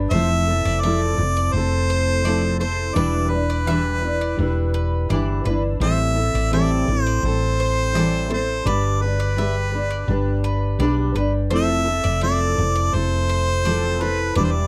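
Reflective and wistful, this 84 BPM acoustic pop passage cut from a longer piece sets a smooth, lightly vibratoed harmonica melody up front over a double-tracked, full-bodied fingerpicked steel-string guitar and a dark, round fretless electric bass, while a bright bowl-back mandolin plays arpeggios in the background through chords moving from Fmaj7 to Em7, Am7 and G, all captured in a dry, close 1970s-style studio sound.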